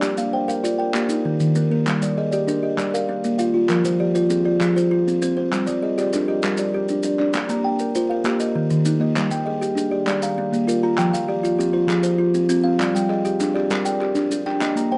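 Rippling and hypnotic, this southern African traditional excerpt in a mbira-style interlocking cycle sets a bright, ringing, close-miked kalimba beside a mellow, buzzing fingertip-plucked kalimba, both playing arpeggios up front, over crisp group handclaps from a live room and grainy maracas, all in a dark production with moderate studio reverb.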